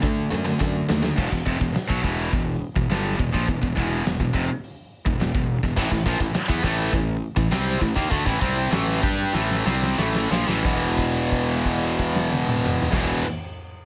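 Dark and epic, this heavy metal excerpt moves in 4/4 with a straight feel at 89-105 BPM in E minor, and it slows down from 5.8 to 10.6 seconds. Two bright, distorted electric guitars carry the riff up front: a high-gain one that plays throughout, and a tight one that drops out after 1.2 seconds and returns at 5.8 seconds. Beneath them, a fuzz-soaked fingered electric bass growls with overdrive and a punchy edge. A big acoustic rock kit in a large room brings a fat snare, a punchy kick, crash, hi-hat and toms, its top rolled off for a dark, smooth tone, with drum fills at 0.6 and 9.3 seconds. The harmony moves from D to E minor, then to A5, and settles on an E5 held from 10.6 seconds, all under a light reverb.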